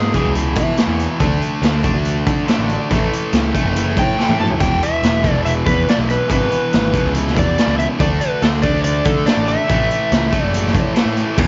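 A dark, overdriven slide guitar carries the melody, sounding briefly at the start and then returning from 4.0 to 10.9 seconds over a swaggering, driving blues rock and southern rock groove at 141 BPM in a straight 4/4. Beneath it, a bright, double-tracked stack guitar drives the riff up front while a growly fuzz bass digs in, and a gritty, saturated garage drum kit with a boomy kick and rolled-off top punches through a drum fill at 4.2 seconds. The chords move from E through D5, A5 and E5, all set in a small room ambience in this short cut from a longer piece.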